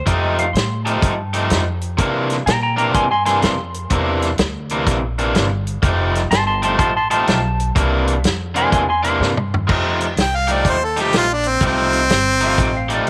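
A swung shuffle at 124 BPM in 4/4 drives this soulful, swaggering electric blues in F mixolydian. It opens in the middle of a longer piece, with an upright bass giving woody, dark pizzicato low end and a soul drum kit sitting dry and up front with a tight kick and a medium-tuned snare. An overdriven semi-hollow guitar plays a bright, picked riff, while a clean lap steel carries a slide solo with volume swells over the F9 and C9 changes for the first 9.7 seconds. A drum fill at 9.2 seconds leads into the next section, and a close-miked harmonica enters at 10.2 seconds with a clear, jazz-styled melody marked by scooped notes and light vibrato. A light, small-room reverb gives the parts a touch of space.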